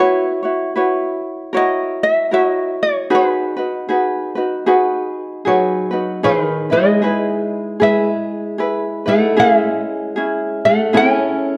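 Fingerpicked ukulele carries the melody up front in this relaxed, dreamy Hawaiian piece, a short cut from a longer work, while a second ukulele, also light and fingerpicked, supplies accompaniment beneath it from the start. The pace is an easy 77 BPM in 4/4 with a gentle swing on the eighth notes, opening in B major over F#7sus4, F#7 and B6 harmonies. At 5.5 seconds an old ladder-braced acoustic guitar enters with a fingerpicked second line in a lower register, its boxy tone marked by audible finger squeak. The key moves to E major at 6.2 seconds, where Emaj7 and then Amaj7 chords give the closing passage a floating color. A moderate recital-hall reverb and a dark, warm production wrap the instruments in a mellow, intimate space.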